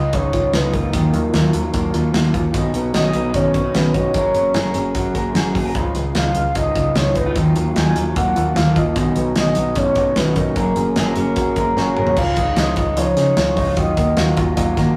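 A rough rehearsal-room recording with warm saturation and moderate stone-room reverb carries this bright, nostalgic jangly indie pop excerpt at 150 BPM, where a soft octave-layered synth lead with chorus carries the melody over a full-bodied, fingerpicked jumbo steel-string acoustic guitar in the background, dark, slightly broken-up arpeggios from an electric guitar through a small old amp, a round, foam-muted dub-picked electric bass, and an up-front studio drum kit with a punchy kick and bright cymbals whose fill at 11.8 seconds ushers in a very quiet, woody, slightly detuned upright piano at 12.2 seconds.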